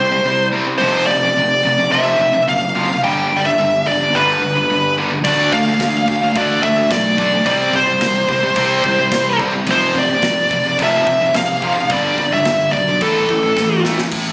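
Heavy and relentless, this heavy metal excerpt from a longer piece drives at 108 BPM in a straight 4/4. A dark, high-gain lead guitar sits up front carrying the melody, while two bright, picked rhythm guitars play riffs beneath it: one high-gain and very quiet, the other tight and set in the background. A growly, fuzz-laden fingered electric bass holds the low end with overdrive. The polished studio drum kit, with punchy kick, medium-tuned snare and bright crash cymbals, joins at 5.2 seconds and closes with a fill at 13.6 seconds. The harmony cycles through C5, F5, G and Dm before landing on A5, all heard through a small room reverb with compression, captured on a phone in the room.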